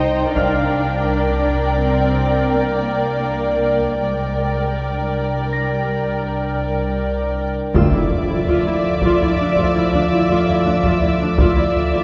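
Ominous and uneasy, this excerpt from a suspense film score moves at 82 BPM in 5/4, where muted violin, viola, cello and double bass sections bow veiled, con sordino lines over a glassy, ethereal glass harmonica and a ringing harp in the background, with brief taiko hits at 0.4 seconds, before the music settles into D minor at 7.7 seconds as mellow French horns, hard-mallet timpani, a huge dark impact, returning taiko and high violins join under a wet church reverb.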